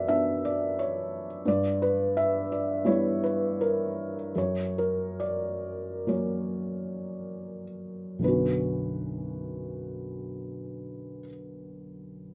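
Classical solo piano in B harmonic minor, bittersweet and moody, with a felt-muted upright piano playing up front in a dark, intimate tone at a rubato 50-88 BPM, slowing from 1.5 to 8.2 seconds as the harmony moves through Bm, G6 and F# before settling on Bmadd9 in a small, moderately ambient room.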